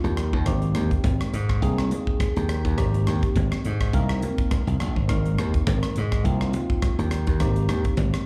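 A live club sound with small-room ambience and club reverb frames this short cut from a longer electric jazz fusion piece in Ab major, moving at 104 BPM in 4/4 with a light 16th-note swing and a bright, soaring mood over a single Abmaj7 chord. A punchy, up-front slap bass and an airy, polished drum kit with a punchy kick, hi-hat and rim click drive the groove, while a clean tine electric piano with phaser sits back in the mix as accompaniment. Thin-skinned, vintage-toned congas join at 0.5 seconds, adding a band-limited percussive sparkle.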